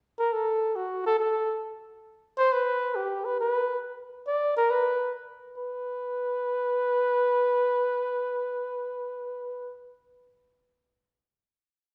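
A lone flugelhorn enters at 0.2 s, its mellow tone carrying a light vibrato as it opens this short jazz fragment in free time. The mood is playful and swinging, with the horn placed up front and sounding present. Its line stays within a compact middle range, from F#4 up to D5, in a jazz style. Around 5.6 s the solo moves into a second section, and the horn plays on until it stops at 9.8 s. A wet recital hall reverb surrounds the instrument, giving it the airy bloom of a church or concert hall.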